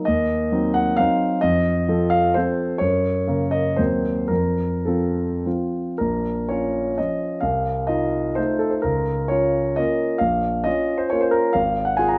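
Dotted rhythms drive this romantic triple-time dance for solo piano, its pulse pulled and stretched by a free rubato that gives it a capricious yet wistful mood. The concert grand sounds open and up front, with deep bass and long sustain, set in the wet bloom of a large studio reverb. A new phrase begins at 6.0 seconds and settles onto the home minor chord before this short fragment of a longer piece breaks off at 12.2 seconds.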